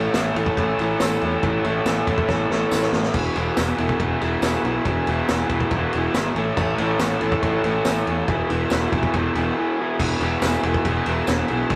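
A straight 140 BPM drive powers this rowdy, raw garage rock excerpt, where an up-front, double-tracked overdriven guitar riff sits over a growling fingered bass and a saturated, gritty vintage drum kit with dark cymbals and a tight kick that breaks into a fill at 2.3 seconds, while a buzzy combo organ holds sustained chords with light vibrato in the background, adds its own fill at 9.1 seconds, and a jingly tambourine shakes along behind it all in a rough rehearsal-room sound.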